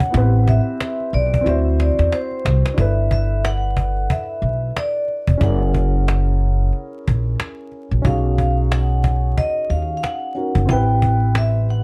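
A dark, warm production with vinyl crackle frames this cool, relaxed jazz-hop excerpt at 91 BPM, swung on the sixteenths. Soft-mallet vibraphone carries an airy, ringing melody with slow motor vibrato and a slapback echo, taking a solo in the first 2.8 seconds while the woody cajon, struck with hard hands, plays a fill from 1.5 seconds. Underneath, a thumpy pizzicato upright bass sits up front and a mellow baby grand piano with audible action noise and plate reverb moves through extended chords from Am9 and D9 to G69, F#9 and B69 before returning to Am9.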